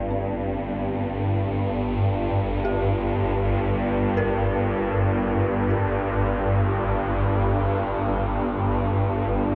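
A swarming drone sits up front, a tense, granular mass of detuned sine tones in unison that fades in slowly, sustains and evolves across the low register from G1 to G2, carrying its own built-in reverb and a bright edge. Far behind it, a very quiet, dark detuned synth bell plays eerie arpeggios between C4 and Bb4, its inharmonic FM tone striking quickly and decaying with a mellow, chorused shimmer. Both parts run together from 0.0 to 9.6 seconds over a single Gm add11 harmony, a short cut from a longer piece of dark ambient drone in free time. A huge, wet reverb with a 7.8-second tail surrounds the sound, stretching every note into a murky haze. The mood is ominous and dark, more hovering threat than motion.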